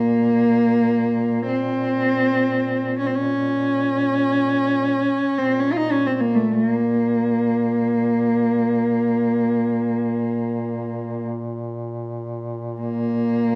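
A smooth, bowed cello sings a longing, solemn Caucasian folk lament in B-flat minor with even vibrato up front, while a softer duduk holds a low drone with its own vibrato and scooped notes in folk style, the two sharing a free-time 13.6-second passage cut from a longer piece and set in a moderate recital-hall reverb.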